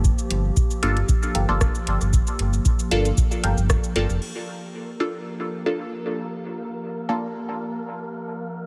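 A lightly swung 4/4 pulse from a dry, deep electronic kick and a booming analog drum machine with metallic hi-hat, crash, rim click and shaker drives this deep, meditative dub techno excerpt over a round, up-front analog bass that pumps against the kick, while a warbling, lo-fi, tape-like pad holds a Gm9 chord throughout with chorus and reverb, a bright, detuned filtered chord stab with phaser and dub echo enters at 0.8 s and is joined at 1.3 s by a mellow second stab riff tucked in the background, the kick, drums and bass fall away by 4.3 s, and an airy, wind-like tuned noise texture drifts in from 4.8 s.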